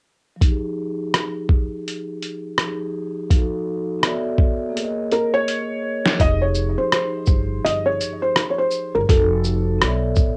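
A swung sixteenth-note groove in 4/4 drives this nostalgic, melancholic lo-fi hip hop fragment, cut from a longer piece. Up front, a muffled, pitched-down sampler-style drum kit brings a thumpy kick and overdriven grit, re-recorded in a small room, and plays a fill leading into 6.2 seconds. A soft-mallet vibraphone with its motor off rings mellow and metallic through cassette-tape haze and a low-pass filter sweep, while a felt-muted upright piano enters at 5.1 seconds with an intimate, short-sustained melody, and a woody, dark pizzicato upright bass joins at 6.2 seconds over light reverb and Fm9, F7b9, Bm11 and Bbm7 chords.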